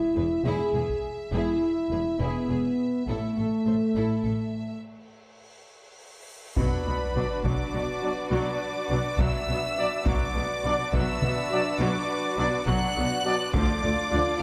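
Dramatic and heroic, this epic orchestral film-score cue moves at a stately 69 BPM in 12/8, opening with intense violins carrying the melody over up-front, mellow French horn chords, a focused second violin line, lush bright violas, and a bass foundation of rich cellos and smooth double basses, with a brief burst of heavy taiko near 0.9 seconds. After a break, a huge, dark cymbal swell and sub drop lead into an impact at 6.6 seconds, where the music settles into B minor and close, dry taiko drums return alongside a hollow, pure flute line and a smooth string section holding chords. Tight trombone chords and distant, roomy trumpet stabs soon join, all set in a dark production with moderate scoring-stage reverb.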